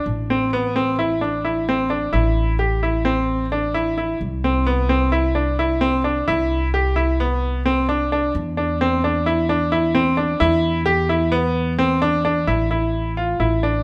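Set in a moderate recital-hall reverb, this restless, urgent fragment of contemporary chamber music in 9/8 pairs an up-front grand piano, its brilliant, worn tone spinning arpeggios through Am, Cmaj9 and E7(no3), with a woody pizzicato upright bass underneath, before the harmony moves to an A5 chord at 12.5 seconds.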